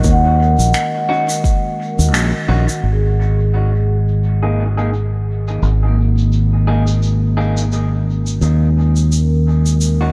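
Ambient dub at 86 BPM with a deep, meditative feel, this short excerpt sets a warbling, detuned tape-like pad holding dark sustained chords from D#m7 to G#sus2 over a round, up-front fingered electric bass, a deep electronic kick that drops out at 1.6 seconds, and filtered shaker and finger snaps with dub echo, while airy, ringing vibraphone arpeggios and slightly broken-up electric guitar stabs, entering at 1.1 seconds, drift through low-pass filters and dub echo, with a band accent near 2.1 seconds and filter sweeps on the drums, pad and vibraphone from 2.8 seconds in a small, lightly reverberant room.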